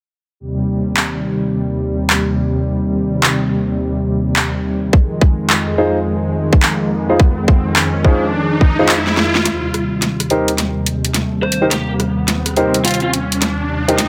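Swung 16ths at 106 BPM in 4/4 drive this funky, playful glitch hop fragment, where an up-front, overdriven electronic kit with a cracking snare, bright hats, handclaps and rim clicks rides over a smooth, detuned sawtooth pad with chorus, tremolo and sidechain pumping, joined by a tight electronic kick at 4.9 seconds, gritty concert grand piano stabs with tape echo and a deep, natural low end, an electronic riser building into a filter-swept section at 9.5 seconds, and a brief dark, lo-fi overdriven guitar melody entering at 11.4 seconds, set in light digital reverb.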